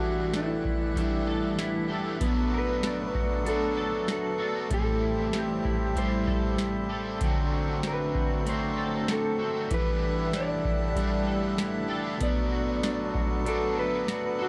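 A booming analog drum machine sits up front from 0.3 s, its deep kick, crisp snare and metallic hi-hats anchoring this hazy, haunting dream pop excerpt in a straight 4/4. Around it, a twangy, slightly broken-up guitar plays arpeggios through analog chorus and tape echo. A bright, double-tracked overdriven guitar carries the accompaniment with harmonic tremolo and lush chorus, and a reedy, nasal harmonium breathes sustained chords through plate reverb. A dark, clean guitar melody floats through the mix with tape echo, while the harmony cycles through Em11, Bm7, Am7 and D7 in a dark, warm production touched by faint mains hum.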